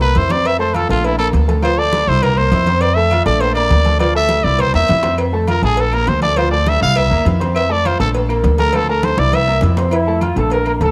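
A raspy, gritty trumpet solo with vibrato opens this sunny, festive salsa excerpt at 203 BPM in F major over a present baby grand piano, a dark, thumpy pizzicato upright bass, very quiet thick-skinned congas, ringing metal-shelled timbales and agogo bells, a tight high-tuned cowbell and faint woody claves, with drum fills breaking up the Bbmaj7, Dm7 and C7 changes before a distant, roomy horn section with light vibrato takes over at 9.9 seconds, the trumpet, piano and horns all carrying a cassette-tape tint within a small, lightly reverberant home-recorded room.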